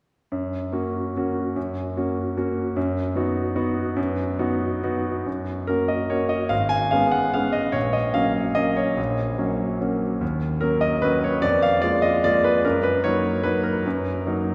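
Bathed in a wet concert-hall reverb with a 2.5-second decay, a clear, up-front concert grand piano with a deep bass plays a graceful, playful classical waltz in 3/4 and F# major, cut from a longer piece. The rubato tempo moves between 131 and 155 BPM as the solo piano spans G#1 to G#5, opening on F# and B/F# harmony before a second passage from 5.3 seconds turns toward D#m7 and D#m/F#. Its smooth, vintage tone carries through to the close at 14.5 seconds.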